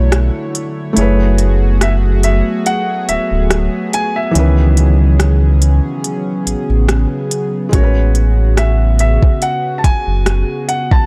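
Sensual and late-night, this contemporary R&B excerpt moves at a relaxed 71 BPM in C# minor, with a gentle swing on the sixteenths and a dark, warm production. A deep, full sine sub bass with an octave sits up front, with a soft kick, smooth hi-hats and rim clicks from an electronic drum kit, which starts at 0.1 seconds. Beneath them, a felt-muted upright piano plays soft, mellow accompaniment with audible action noise, while a shimmering, retro pulse-width pad holds slow-attack chords washed in chorus. A barely audible electronic downlifter passes early on, and at 1.0 seconds a grand piano enters with an intimate, natural-sounding melody in its upper register. The chords drift from Dmaj9 through F#m11 and C#m9 to Amaj13, all inside a digital ambience.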